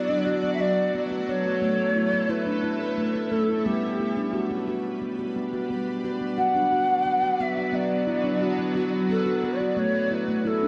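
World meditative music in B minor at a slow 59 BPM in 6/8, this gentle excerpt sets an airy, softly vibrato Native American-style cedar flute melody with delay over ringing handpan arpeggios played with soft fingertips and a shimmering, ethereal ambient pad with chorus sustaining chords through Bm, A and G, all bathed in a wet echo-chamber reverb and the warbling pitch drift of worn cassette tape.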